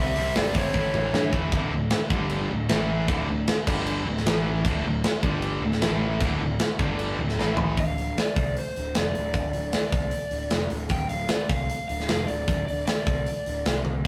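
A straight 4/4 pulse at 153 BPM drives this heavy hard rock excerpt, with a tight metal drum kit up front, its bright cymbals and fills framing each section, and a fuzz-toned picked bass grinding underneath throughout. Three picked rhythm guitars (a double-tracked distorted one in the background, an overdriven one with harmonic tremolo, and a very quiet scooped high-gain one) play a low riff over D5, G5 and A5 power chords until 7.8 s. A dark lead guitar, pushed through a small cranked amp, opens with a brief phrase and returns at 7.8 s to carry the melody in D minor over a rough, tube-saturated rehearsal-room sound with moderate reverb.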